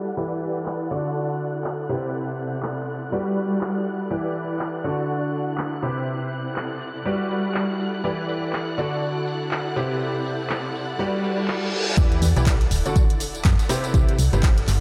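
Piano house at 122 BPM with a swung 16th-note feel, energetic yet bittersweet, cycling through Em7, D, Cmaj7 and Gmaj7 beneath a bright, brilliant concert grand riff that sits up front with ensemble chorus, tape echo, sidechain pumping and a filter sweep, framed by a lush violin section holding sustained chords and a dark, smooth-topped string texture in the background, all over a tape-warm analog drum machine of handclaps, hi-hat, rim click and tambourine. A reverse cymbal and sub drop build from 11.2 s into a drop at 12.0 s, where the violins stop and a round, punchy FM bass with tube saturation joins a punchy electronic kick. The dreamy mix is soaked in a lush hall reverb, and the clip is cut from a longer piece.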